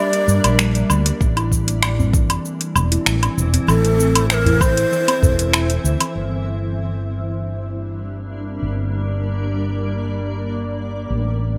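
Mystical and warm, this organic downtempo excerpt in G dorian at 97 BPM sets a breathy, vibrato-laden low ney melody and ringing steel tongue drum arpeggios, both carried by tape echo, over a cloudy, detuned granular pad and a dark, round fretless bass that both pump with sidechain, while an overdriven, up-front deep house kit of cabasa, finger snaps, metallic hats and woodblock, a deep electronic kick arriving at 1.2 s and a very quiet small udu fill out the groove before the ney, tongue drum and percussion drop away by 6.1 s, leaving pad and bass to sustain a Gm chord to 11.6 s.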